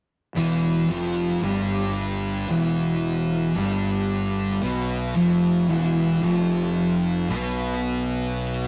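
This rough rehearsal-room recording carries a light reverb and a raw, unpolished presence, cut from a longer piece. It is ominous, brooding metal at a slow 56 BPM in straight 4/4, sitting in E phrygian over a single E minor chord. Two thick fuzz guitars play the riff together from 0.4 to 8.7 seconds, both distorted and picked with a heavy, saturated tone, one of them pushed up front in the mix. Beneath them, a fingered electric bass with overdrive adds a growly, punchy low end that stays bright and direct against the guitars' warmer fuzz. The whole passage holds to one dark, grinding section, letting the weight of the fuzz and the slow pulse do the work.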